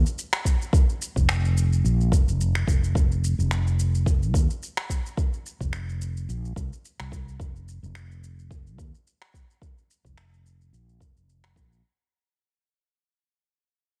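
A dark, round fretless electric bass sits up front with a sidechain pump in this hypnotic, meditative organic downtempo piece at 108 BPM, riding a lightly swung 16th-note feel beside a deep, up-front electronic kick re-recorded in a large room with studio reverb and a layered, overdriven electronic shaker and finger snaps, also with studio reverb, in a mostly dry mix that fades out across its 11.8 seconds.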